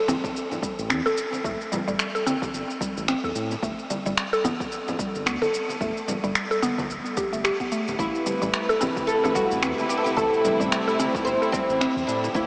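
Organic downtempo at 110 BPM in A dorian with a light 16th-note swing, hypnotic and meditative, where a woody, up-front mallet-like synth pluck with chorus, phaser and analog delay spins arpeggios over Am and G from the start, joined by an overdriven electronic kick drum, electronic shaker and finger snaps, ringing congas set back in the mix and a round, dark analog bass with tube saturation and sidechain pumping, until at 8.0 seconds a bright, double-strung oud takes the melody through delay while a veiled, con sordino string section sustains Amadd9 chords with 12-bit sampler grit, the dreamy mix soaked in huge reverb with a small-speaker sound.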